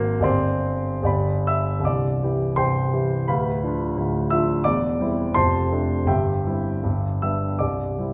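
Heard up front in a wet scoring-stage reverb with a 1.5-second decay, a concert grand piano rings with a warm, deep bass. This is a short passage cut from a longer romantic character piece for solo piano, passionate and warm in mood, set in 2/4 and shaped with a flexible rubato. The piano plays alone across the full 8.1 seconds, ranging from C1 up to E6. An opening passage hovers on a Gsus4 that settles onto G before the music moves home to C at 1.9 seconds. From there a longer phrase passes through Bdim/D, C/E, Dm7/F and C/G, then leans on G before coming to rest on C.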